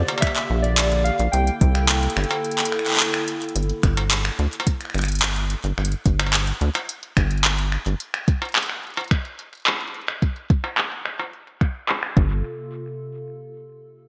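This intricate, eerie IDM cut opens at once with warbly lo-fi synth keys carrying a short, nostalgic melody over a detuned tape-like pad and a rubbery square-wave bass. The keys have a vintage, decaying tone thickened by chorus and digital delay. The pad's slow-attack chords breathe with sidechain pumping and built-in reverb, while the hollow, bouncy bass sits dark and up front. Within the first second an industrial drum kit of finger snaps, handclaps, smooth hi-hat and struck metal arrives with a soft, tape-toned electronic kick. The muffled kit is filtered and gated, and from 3.6 seconds a filter sweep runs across it as the melodic parts fall away, leaving drums and bass driving the straight 108 BPM groove in G dorian. A lush hall ambience and bright 1980s-style digital sheen frame the whole fragment, and near its close the pad and bass return briefly on a Gm11 chord at 12.2 seconds before the harmony drops out.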